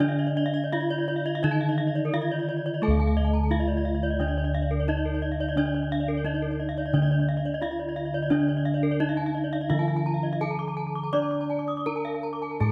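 Hypnotic and shimmering, this gamelan passage in D pelog moves at 86 BPM in 4/4 with uneven beats, cut from a longer piece and shifting into a new section at 2.8 seconds. A bright bronze metallophone carries the melody, its paired tuning producing shimmering beats, over a lower metallophone accompaniment with a boxy, small-room character and a round, dark bed of bossed gongs holding the bass. Two airy metallophones spin arpeggios high above, and the close, detailed sound under light reverb brings out the ringing strike of the horn mallets.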